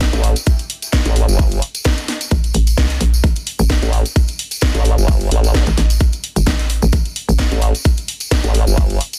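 Bass house at 130 BPM in A phrygian, aggressive and bouncy with a light 16th-note swing, built on a tight, up-front electronic kick, a garage kit with a cracking, tape-warm snare and hi-hat, a very quiet gated 80s kit in a bright stone room, and jingly tambourine, while a hollow, knocking FM bass with tube saturation and sidechain pumping drops out at 7.5 seconds and a chorused, formant-filtered wobble bass carries the low end until 9.0 seconds in this dense, heavily limited cut.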